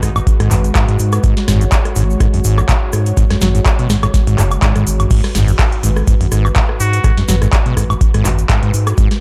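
A squelchy, resonant sawtooth acid bass riff with overdrive leads this trippy, raw acid house excerpt in G# minor at 124 BPM with a light 16th-note swing, sidechain-pumping alongside a thick, saturated sine sub bass and a smooth, detuned pad with chorus holding a G#m7 chord, while an overdriven deep kick sits up front, a booming analog drum machine with crisp snare, metallic hats, claps, rim clicks, toms, woodblock and crash plays a fill at 4.6 seconds, a grainy egg shaker stays in the background, and a nasal trumpet with straight mute and delay slips in a brief scooped F#4 at 6.8 seconds, in a dark, dry production.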